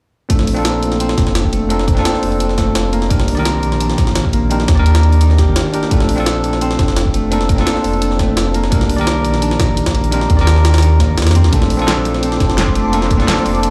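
Heard through a big sound system in a bare room with a large studio reverb, this rolling, lush liquid drum and bass cut from a longer piece moves at 171 BPM over Bbmaj9 and Cm9 chords, with a bell-like, up-front tine electric piano carrying vintage 12-bit sampler grit and delay, ringing fingerpicked Celtic harp arpeggios through tape echo, a deep sine-and-triangle sub bass doubled at the octave, a punchy layered electronic kick that stops at 13.2 seconds, a pitched-up, compressed jungle sampler kit with a high-tuned snare, a pop drum kit with a fat snare, and a glassy, ethereal FM pad with ensemble chorus drifting in behind everything at 11.7 seconds.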